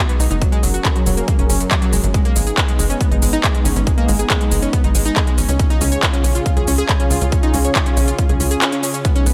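A lush, detuned supersaw pad with a filter sweep and a round, chorused analog pluck playing arpeggios with delay open this uplifting, soaring trance passage, both pumping against the sidechain as the harmony moves from F#add9 to G#m and on to C#. A big-room dance kit with crisp hats, handclaps and shaker enters at 0.1 seconds, a tight, driving sawtooth-and-square sequencer bass with a fast, decaying filter pluck follows at 0.2 seconds, and a punchy, tape-warm electronic kick sits up front from 0.4 seconds. The mix carries light reverb and digital ambience, and the clip is cut from a longer piece.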